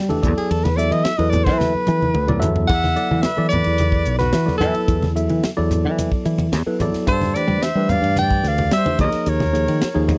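A clear soprano saxophone leads this funky, driving electric jazz fusion excerpt, its jazz-style line full of vibrato and scooped notes, soloing up front from 0.4 seconds. Underneath, a fingered electric bass sits forward in the mix with a growly, punchy, direct tone, while a tight funk drum kit with a high-tuned snare and tight kick keeps a straight 4/4 at 110 BPM alongside bright, thin-skinned congas that sound compressed and saturated. A worn, slightly out-of-tune tine electric piano, lightly overdriven through its built-in speakers, supplies chords moving through E9sus4, Gsus24 and D#9sus4. After a drum fill, a quieter silver concert flute joins at 2.7 seconds with an airy, reedy straight tone and crisp attack as a second line beneath the saxophone. The recording is dry and close in a 1970s studio style, tuned slightly flat of standard pitch, and closes with a brief electric piano fill.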